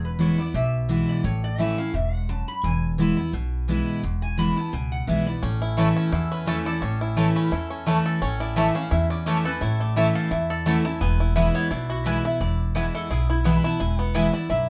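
A moderate studio room lends a natural ambience to this lively, virtuosic bluegrass excerpt, where a full-bodied, up-front picked dreadnought acoustic guitar on old strings and a thumpy pizzicato upright bass underpin the swung groove from the start. Above them, a nasal, metallic lap resonator guitar, played slide with fingerpicks, carries the melody throughout. A twangy, percussive banjo joins with arpeggios at 5.4 seconds, and a woody, double-strung mandolin adds picked stabs from 5.8 seconds.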